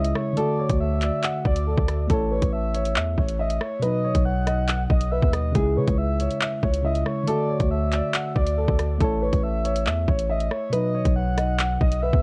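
Dark and menacing, this short drill cut from a longer hip hop piece moves with a half-time feel over a chord cycle of D, A, B and C#m. A dark concert grand piano carries the melody with audible action noise and a boxy, intimate tone touched by tape echo, while a breathy, flute-like synth lead with chorus and vibrato floats a soft second line alongside it. A mellow tine electric piano, slightly out of tune and lightly overdriven, fills in the accompaniment. Up front, a long, deep 808-style bass sits beside an electronic drill kit of hard-clipped kick, handclaps, rim clicks and tape-warm hi-hats. The whole recording is dry and worn, with the warbling pitch drift and dulled top end of old cassette tape.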